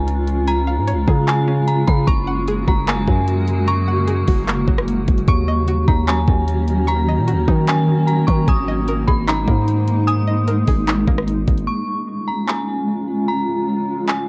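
A hazy, melancholic cloud-rap excerpt opens on an eerie, warbling FM synth bell melody with chorus and tape echo, floating over a blurred, evolving granular pad that pumps under sidechain, a twangy string-like resonator pluck tracing arpeggios in the background, and a deep, sine-toned 808 bass with tube saturation. A trap kit enters at 0.1 s at 150 BPM in a half-time 4/4 feel, its knocking kick, bright hi-hats, handclaps and rim clicks sitting up front as the chords move from C# through F#add9, D#m7 and G#sus2. At 11.7 s the bass and pluck drop out, leaving the bell, pad and drums to return to C# in a dry, cassette-worn home-recorded sound.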